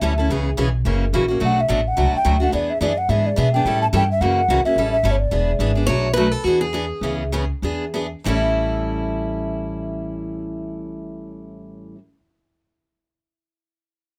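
Playful and lively, this short cut of acoustic string swing pairs a bright, boxy parlour guitar accompaniment and a woody, thumpy pizzicato upright bass with a mellow, airy clay ocarina melody full of vibrato from 1.4 seconds; at 5.9 seconds a second picked dreadnought guitar, full-bodied with fresh strings and finger squeak, takes up a line as the tempo slows until 8.3 seconds, all set in a lightly reverberant room.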